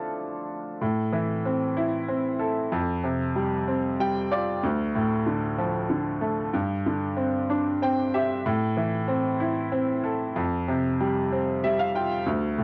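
A bright, woody upright piano, slightly detuned and sitting up front, plays alone through this tender, heartfelt pop fragment cut from a longer piece, moving at 63 BPM in a straight 6/8 across a range from D2 to G5. It drifts through Am, Fsus2, Dm and Gsus4 harmonies, adding short fills at 3.7, 7.5 and 11.3 seconds. The home cassette recording lends a tape character, and a modest small-room reverb gives the piano an intimate, domestic feel.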